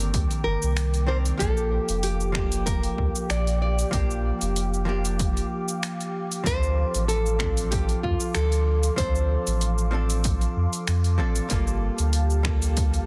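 Relaxed and warm, this sunset chillout excerpt in Bb major moves at 95 BPM in 4/4 with a light swing on the sixteenths, cut from a longer piece. A dark, fingerpicked nylon-string guitar carries the melody with audible finger squeak and a touch of delay, stopping at 10.2 seconds, while a clean, compressed hollow-body jazz guitar accompanies with its own delay. An airy, breathy pad with a detuned, chorused shimmer and slow attack holds sustained chords, and a round, sine-like sub bass sits up front beneath it. The deep house drum kit adds cabasa, finger snaps and hi-hat with overdrive and soft clipping on the snare, joined by a punchy, overdriven electronic kick that drops out from 0.8 to 1.4 seconds. The harmony moves from Cm9 to Bb6, Dm7 and Gm9, all in a dry, dense and heavily limited modern mix.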